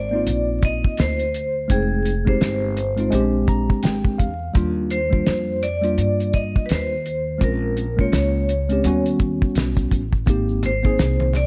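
A dark, cloth-damped drum kit with a fat snare and tight kick anchors this mellow, nocturnal jazz-hop cut with a swung 4/4 feel, as a bright, ringing vibraphone carries the melody over thumpy gut-string upright bass and a worn, slightly out-of-tune tine electric piano that adds a fill from 3.1 to 4.6 seconds, before compressed egg shaker and hard-hand congas slip in at 10.3 seconds beneath light studio reverb and vinyl crackle.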